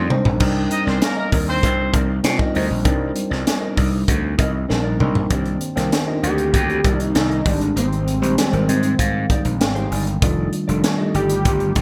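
Bittersweet and urban, this polished 1980s jazz-funk pop excerpt moves at a straight 98 BPM in C minor, with a gritty, overdriven slap bass growling up front beside a punchy fusion kit with a high-tuned snare and gated reverb. A worn, slightly out-of-tune tine electric piano carries the chords and adds a fill at 8.4 seconds, while a dark, fingered electric guitar riff sits in the background under lush chorus. A clear, vibrato-rich horn section plays a brief octave-doubled line at 0.7 seconds, and a fat, detuned sawtooth synth lead with a sub octave and filter sweep takes the melody from 6.2 seconds, all wrapped in bright digital sheen and light room reverb.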